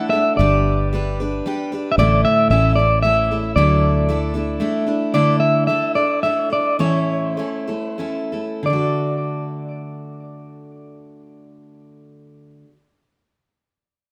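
A dark, slightly broken-up electric guitar carries the melody, shimmering with tremolo and tape echo, in this gentle, nostalgic folk fragment in 3/4 cut from a longer piece. A bright, full-bodied jumbo steel-string acoustic guitar picks the accompaniment throughout, while a round, foam-muted fingered electric bass sits up front from 0.4 s until it drops out at 4.6 s. The tempo slows between 5.1 and 8.7 seconds, and the trio sounds through a moderate, large studio reverb.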